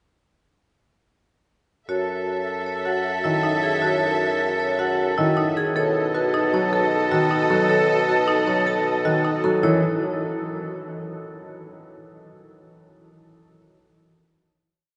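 A wet cathedral reverb with a long, six-second-plus tail wraps this short, complete piece of minimalist classical pattern music, its top end soft and rounded. In F# dorian at 155 BPM in a straight 5/4, the mood is meditative yet urgent. From 1.9 s, a bright, metallic vibraphone struck with hard mallets rings out the melody as a repeated short cell with the motor off, while a woody rosewood marimba, also played with hard mallets, spins percussive arpeggios of its own short cell beneath it. A mellow bassoon anchors the bass with long notes and light vibrato, and a distant, roomy oboe adds a second line of swelling held notes. A focused studio string section with a smooth top supplies bowed, swelling chords. A natural-sounding baby grand piano joins at 3.2 s with a repeated accompaniment cell as the harmony moves from F#m7 to B7. The oboe and strings drop out at 9.4 s, and the remaining parts settle onto a final F#5 chord at 9.6 s.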